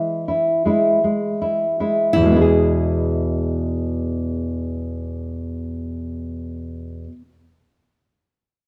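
In a swaying 6/8 with a free, rubato feel, this brief romantic duo for two nylon-string guitars slows down over its opening 2.1 seconds before settling into a new passage. The mood is lyrical and warm, a short excerpt lifted from a longer piece. One guitar carries the melody in a fingerpicked classical style, its fresh strings giving it a warm, clear tone, though it sits lower in the mix. The second guitar provides a dark, full-bodied accompaniment that reaches from the deep bass up into the middle register. It is thumb-plucked and placed up front, with finger squeak audible on the strings. The two players share one room, and a wet, large studio reverb gives the sound a warm, spacious glow, with the melody ending at 7.0 seconds and the accompaniment ringing on to 7.3 seconds.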